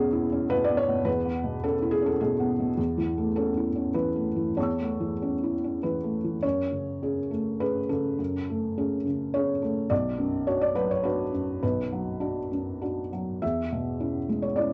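A dusky home cassette recording in a small, moderately reverberant room frames this wistful, intimate neoclassical minimalist piano excerpt in a rubato triple metre, where a felt-muted upright plays alone throughout, soft, mellow and close up front with audible action noise, its second passage beginning at 6.4 seconds as the harmony moves from E6 through A/E to F#madd9 and Bm before returning to E6.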